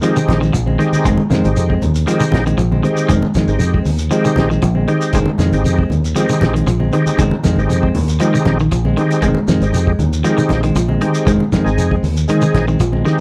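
A dark, round fingered electric bass sits up front in this driving, defiant afrobeat excerpt, entering at 0.3 s with a touch of tube saturation and staying low over a single Fm7 chord. Around it, a thick overdriven tonewheel organ fills in the accompaniment through a slow rotary speaker and chorus vibrato. A twangy electric guitar at the edge of break-up picks arpeggios, while a clean electric guitar adds picked stabs. The cloth-damped drum kit is muffled and lo-fi, with a fat snare, a tight kick, hi-hat and a rolled-off top. A grainy, mellow shekere and distant, low-tuned congas played with soft hands sit further back, the congas carrying a large-room sound of their own. The groove is straight 4/4, with the dry, close feel of a 1970s-style small-room studio recording.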